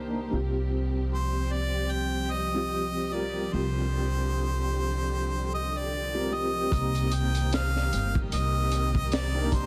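A bright, up-front harmonica carries the melody from 1.1 seconds, its light vibrato trailing tape echo over a melancholic, dark trip hop groove at 75 BPM in C minor, swung on the 16ths. Beneath it, a felt-muted upright piano plays soft, mellow accompaniment roughened by tremolo, vintage 12-bit sampler grit and tape echo, while a lush bowed string section holds sustained chords under a filter sweep and a woody pizzicato upright bass thumps low as the harmony moves from Fsus2/C to Cm7. At 6.7 seconds a crunchy, saturated breakbeat kit with a tight kick and high-tuned snare joins in, set in a small room with light reverb and a dense, heavily limited master, in a passage cut from a longer piece.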